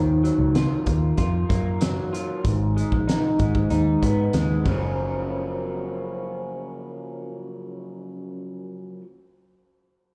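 A straight, unhurried 4/4 pulse sets a laid-back, dreamy indie pop and bedroom pop mood in this short clip cut from a longer piece. A loose indie drum kit, with a punchy kick, fat snare, dark cymbals on hi-hat and ride, and a pumping room sound, plays up front from 0.2 to 4.8 seconds before dropping away. Underneath, a vintage muted picked electric bass gives a round, foam-muted low end throughout. An electric guitar through a small old amp carries the accompaniment, its slightly broken-up, lo-fi tone compressed and placed forward, with a subtle chorus and vibrato shimmer. The chords move from D#madd9 to G#m and settle on F#maj7 near 4.7 seconds, as the music shifts into a new section at 5.0 seconds. The whole thing sounds like a live gig heard through the venue's PA, wrapped in light club reverb.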